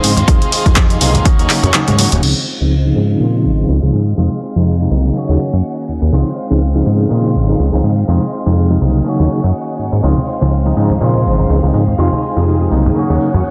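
Filtered disco house with a sunny, funky swing, this brief cut opens on an overdriven, punchy drum machine with crash, handclaps and hi-hat plus a thumping kick that drops out at 1.7 seconds, while a plucky sawtooth bass, a barky tremolo electric piano with sampler grit, a twangy envelope-filtered guitar riff and a swirling phased string machine all pump under sidechain and a low-pass filter through Fm7, Ebm7 and Dbmaj9 changes, with tambourine and congas returning softly in the background at 10.0 seconds.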